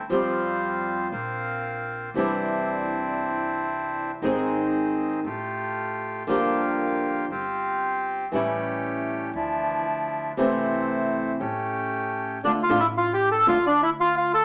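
Through vinyl crackle, a small-speaker tone and wet studio reverb around a band playing live in one room, this dramatic, tense rubato tango fragment at 117 BPM sets dark, reedy bandoneon stabs and an up-front, fingerpicked flamenco guitar over a woody, growly pizzicato upright bass through a chord path running from Fsus2 to A7, until at 12.4 s a bright bandoneon melody enters on Dm.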